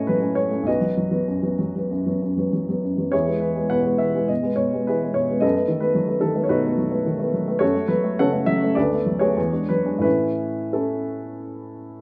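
Romantic classical character piece for solo upright piano, hopeful and passionate in mood, played with a flexible rubato feel: its woody, polished tone sits present and up front within a moderate studio reverb, moving through a searching chord sequence that settles by 10.0 s in this brief passage cut from a longer work.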